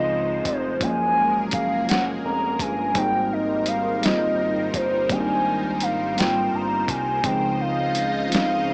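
A dusty, gritty sampler-style drum kit with a thumpy kick enters at 0.5 s to carry a slow, sensual six-eight R&B groove cut from a longer piece, where a hollow, woody clarinet-like synth lead with vibrato sings up front over a worn, slightly out-of-tune tine electric piano, a lush detuned pad with chorus and phaser, and a fat analog bass moving through rich major-ninth chords, all set in light digital ambience with a small-speaker sound.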